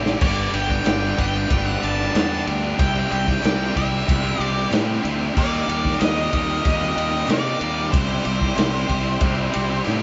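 A straight 4/4 groove at 93 BPM drives this swaggering classic rock excerpt, built on a muffled, lo-fi vintage drum kit with dark cymbals and a tight kick, a round, punchy fuzz bass, and a bright, double-tracked overdriven guitar riff sitting up front over G, C, Eb and C. A dark octave-fuzz lead guitar carries the melody from 0.2 seconds, while a very quiet tonewheel organ holds shouting, key-clicking sustained chords through a rotary speaker. Crisp group handclaps enter softly at 0.8 seconds, and drum fills open and close the passage, all captured as a band playing live in one room with moderate studio ambience and a rolled-off top end.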